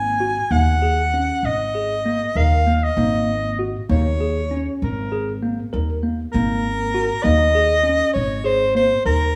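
A breathy soprano saxophone leads this restless, playful piece of contemporary chamber music, its whispered subtone, soft attacks, scooped notes and vibrato giving the jazz-style solo line an intimate, up-front presence. Beneath it, a pizzicato upright bass with steel strings sounds woody, dark and thumpy, sitting close to the listener as it anchors the low end. A clean tine electric piano, heard through its built-in speakers, spins arpeggios in the middle register from 0.2 s until just before the end. The music moves in an uneven 11/8 metre with a straight feel and rests on a single Absus2 harmony throughout. A moderate recital-hall reverb surrounds the trio in this brief fragment of a longer work.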